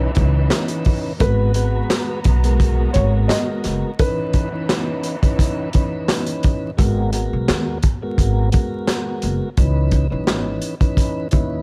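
A crunchy, gritty breakbeat kit of punchy kick, snare, hi-hat and handclaps drives this moody, tough boom-bap hip-hop excerpt at 86 BPM in G# minor with a light 16th-note swing, sitting up front beside a thumpy, woody pizzicato upright bass, while a round tonewheel organ through a slow rotary speaker carries the accompaniment throughout, and a dark upright piano melody and lush bowed string chords over C#m9 and G#m9 harmony drop out around 6.7 seconds, the whole piece framed by small room ambience and vinyl crackle.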